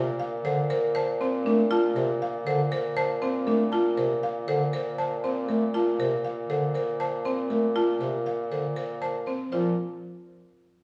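Bright and propulsive, this excerpt from a longer minimalist classical pattern piece moves at 119 BPM in a straight 4/4, centered in Bb major. Two buzzing marimbas with hardwood bars carry the upper texture: one, struck with medium mallets, plays the melody between A4 and A5 with a woody, dry, airy tone, while the other, with medium hard mallets, spins out percussive arpeggios from C4 to C5 and sits up front with a bright edge. Beneath them a mellow bass clarinet, soft in attack and smooth on top, supplies accompaniment in the range C3 to A3. A mellow bassoon with light vibrato and a vintage color anchors the bass on a single Bb2. All four parts play together until 9.8 seconds over a Bbmaj7 harmony that shifts to Bb5 at 9.5 seconds, and the whole sits in a wet recital hall reverb with a small room ambience.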